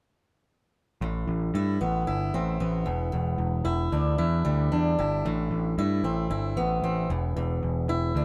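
At 1.0 seconds a fingerpicked acoustic guitar and a picked electric bass come in together, both sitting up front in this brooding, cathartic rock fragment cut from a longer piece. The guitar plays swing-style arpeggios with a warm, boxy tone, while the bass growls beneath it, bright and overdriven, with a direct, amped edge. The harmony moves from Amadd9 to Em7, returns to Amadd9, and lands on a bare E7(no3), which leaves an unresolved tension hanging as the passage closes at 8.2 seconds. The instruments are tuned to A4 = 445 Hz and played in straight 4/4. A light reverb places the band together in one room, giving the performance a live, close feel.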